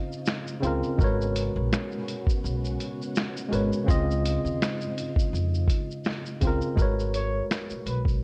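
Lo-fi hip hop with a cosy, nostalgic mood, cut from a longer piece and set in a gently swung 4/4. A worn, slightly out-of-tune tine electric piano sits up front with light overdrive and a low-pass filter, comping on rich major-ninth and minor-eleventh chords, while a vintage organ-like string ensemble hums in the background through phaser and chorus until 6.7 seconds. The sampler-style drum kit is compressed, pitched down and muffled, with a thumpy kick, medium-tuned snare, hi-hat, shaker and finger snaps re-recorded in a large room. A woody pizzicato upright bass enters at 0.6 seconds, and a breathy, whispered flugelhorn with mellow vibrato slips in briefly at 7.1 seconds for an intimate jazz-style phrase. Light reverb, digital ambience and a cassette-tape sheen give the recording its hazy character.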